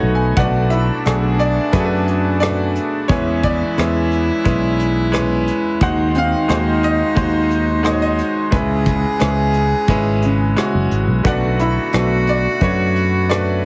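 A heavily compressed, radio-like sound with light reverb frames this short excerpt of a heartfelt, tender acoustic folk-pop ballad, moving at 88 BPM in a straight 4/4. A bright, brilliant concert grand piano with a worn edge and deep bass carries the melody up front, opening with a brief fill before the cello and drums join at 0.4 seconds. Beneath it, a felt-muted upright piano sits in the background with soft, mellow, short-sustained arpeggios, while a round, dark fretless electric bass stays up front with a direct, amped tone. A rich, reedy cello played by one bowed player adds a second line with a period-style gut-string character. A distant, roomy brush drum kit with a punchy kick, hi-hat and rim clicks keeps time as the harmony moves through Bm7, E6, G#7/D#, C#m7 and back to Bm7.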